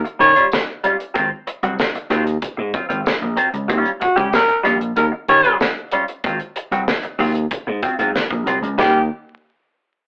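Energetic and strutting, this funk excerpt rides a straight 4/4 groove between Eb9 and Ab13 chords, with a breathy, raspy tenor saxophone carrying the up-front second line over a growly slap bass and a damped 70s drum kit with a fat snare and tight kick. A clean, compressed semi-hollow electric guitar colored by phaser fills in the harmony, while a jingly tambourine sits very quietly, close and dry, in the mix. The rough rehearsal-room sound is thickened by saturation, vinyl crackle and a telephone-like filter in a small room with short reverb.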